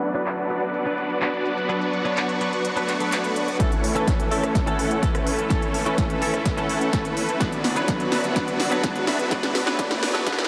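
Festival progressive house in B minor at 126 BPM, euphoric and anthemic, built on a huge, detuned supersaw riff up front with sidechain pumping, chorus and diffuse delay, over biting, vibrato-rich symphonic strings and a twangy, clean electric guitar tucked in the background, all moving through Bm, A and back to Bm. A big-room kit of crisp hats, punchy snare, handclaps and rim click runs throughout with overdrive, filter sweeps shape the drums and synths, and a very quiet riser creeps in at 2.9 seconds before an overdriven, punchy electronic kick lands at 3.6 seconds to launch a build-up with a drum fill. The whole mix is soaked in a dreamy, cavernous reverb, giving this short cut from a longer piece a vast, hazy sheen.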